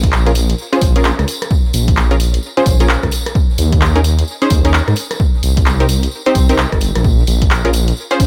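A deep, rumbling detuned saw bass, a punchy analog kick and chorused, filter-plucked chord stabs with dub echo open this late-night, soulful two-step garage excerpt, with the chords moving from Bbm7 through Eb7sus4 and Cm7 back to Bbm7 at 7.0 seconds. From the very start, an analog drum machine also plays handclaps, hi-hat and rim click on a swung sixteenth feel, re-recorded in a small room alongside the kick, while a jingly tambourine sits distant in a large room. The dark, beating bass and the stabs are up front, and the mix carries little reverb overall.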